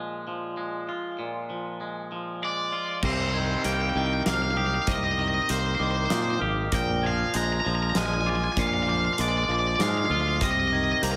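An overdriven, bright cranked stack guitar carries the melody from 2.4 seconds with spring reverb and tape echo in this cathartic, melancholic post-rock excerpt at 98 BPM in 3/4 and C minor, over twangy, clean picked electric guitar arpeggios that open the piece with tape echo; from 3.0 seconds a growly fingered bass, a big dark rock kit with a fat snare and punchy kick, and a mellow, bell-like glockenspiel sitting in the background with echo fill out the Cm7 and Bb7 changes under a light reverb.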